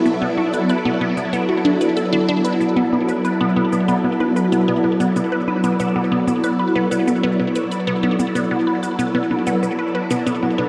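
A squelchy, resonant blip pluck plays a riff between B3 and B4, its phaser and tape echo lending a juicy, up-front sparkle, while a swirling vintage string machine holds slow-attack chords on B minor, thickened by ensemble chorus and phaser. This mysterious, hypnotic stretch of sequencer-driven ambient space music moves at 94 BPM in a straight 4/4, with analog shaker and bongos sitting quieter in the mix and trailing tape echo. A lush hall reverb and a dark, warm production wrap the whole 10.7-second fragment, cut from a longer piece.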